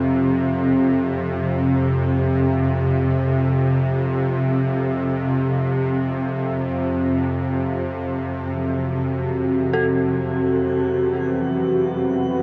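Dark ambient drone in free time, tuned to A4 = 445 Hz, with an ominous, cavernous mood as a section cut from a longer piece. A tense, string-like bowed drone with vibrato sits up front from the start, while a deep, moody sawtooth pad with chorus and shimmer reverb fades in at 0.3 seconds in the background, holding sustained chords that move from F to Esus2. At 9.7 seconds an eerie, inharmonic FM bell enters with arpeggios on A4, treated with tremolo and diffuse delay, all inside a huge, wet reverb with a dark production.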